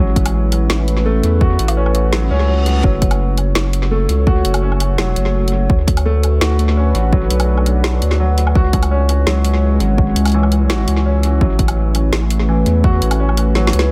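An echo-heavy mix with light reverb gives this heavy, spacious half-time drum and bass excerpt at 168 BPM in 4/4 a cavernous depth. A deep, moody ambient pad holds sustained sawtooth-and-sine chords with a sub octave, wave-folding and ring modulation, its slow attack and long release washed in chorus and its own reverb while sidechain pumping makes it breathe. Beneath it, a felt-muted upright piano plays soft, intimate arpeggios through an analog delay, and a thick, saturated sine sub bass sits up front with a fast attack, tracing Aadd9, F#m, D6 and C#m. The drums arrive at 0.2 seconds: an overdriven, hard-clipped electronic kick punches forward, while a layered kit with a woody snare, bright hats and woodblock, re-recorded in a small room, trails tape echo. A faint electronic reverse cymbal rises at 2.3 seconds, and a drum fill at 13.6 seconds closes the passage.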